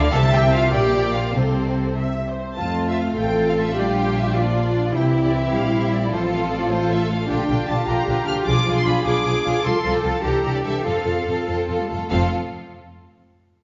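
Spirited and lively, this quick classical-period movement for string orchestra moves in a straight 6/8 at around 94-104 BPM, counted in dotted quarters, in F major. A rich, smooth violin section carries the melody from a distant, lush vantage, while a second violin section, clear and focused, plays a supporting line from 0.1 seconds onward. Violas fill in the accompaniment with an even, vibrato-laden tone, and the cellos and double basses share the bass, the cellos smooth-topped and the basses clear with light vibrato, sitting up front. The harmony moves through chords such as Gm/Bb, a Bdim7 and a C13 before settling on F, and the passage closes on a bare F5 at 12.1 seconds. A wet scoring-stage reverb and a dark production give the whole ensemble a soft, rounded glow, and the recording is cut from a longer piece.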